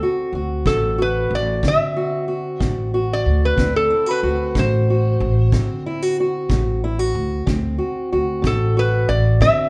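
A rolling 12/8 pulse at 62 dotted-quarter beats per minute, played with a straight feel, carries this short excerpt of swaggering, rollicking acoustic country blues, which sits on a D7 chord. Up front, a metal-body resonator guitar takes a slide solo from start to finish, played with fingerpicks and a steel bar, its metallic, nasal voice high in the mix. Beneath it, a fingerpicked steel-string parlour guitar supplies dark, boxy accompaniment, also placed close. An upright bass with gut strings enters at 0.3 seconds, plucked pizzicato with a woody, thumpy tone. A brushed kick drum arrives at 0.7 seconds, punchy but distant in a roomy studio space. Light reverb gives the small group a touch of air.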